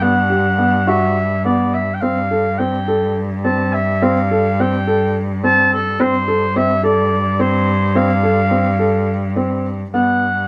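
A light-vibrato oboe carries the melody in this playful, restless contemporary chamber fragment in 7/8 at 211 BPM (eighths), over a felt-muted upright piano's mellow, intimate arpeggios and a rich, nasal bowed cello on a low G, all in moderate studio reverb, with the harmony shifting from Emadd9/G to Dm7/G before settling on G at 9.9 seconds.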